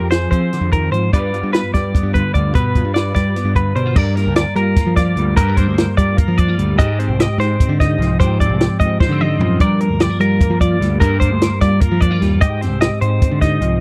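Math rock and midwest emo with a restless, intricate mood at 298 BPM in 7/8, where a fingered clean electric guitar with ensemble chorus plays accompaniment over Fm11, G7, Gm7 and Fm9 chords, a bright, twangy, compressed twelve-string electric guitar picks high arpeggios, a growling, overdriven picked electric bass holds the low end, and an up-front compact cocktail drum kit with a high-tuned snare, tight kick and dark cymbals plays a fill at 9.0 seconds, all captured in a dry, close 1970s-style studio sound.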